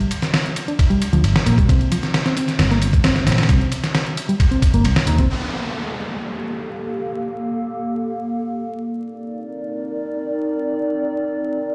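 Breakbeat with a swaggering, energetic strut, this fragment of a longer piece pairs a gritty, compressed soul-sampler drum kit, with its thumpy kick and fat snare up front, against a dry analog hi-hat tucked behind, while a foam-muted picked electric bass riff, grainy from vintage 12-bit sampler treatment and delay, rides over a round, dark picked bass line that enters at 1.1 seconds, before a downlifter sweeps in at 5.3 seconds and a warbling, nostalgic tape-like pad of detuned chorused chords pumps in from 6.1 seconds, all heard through a stone room's reverb and a vinyl crackle.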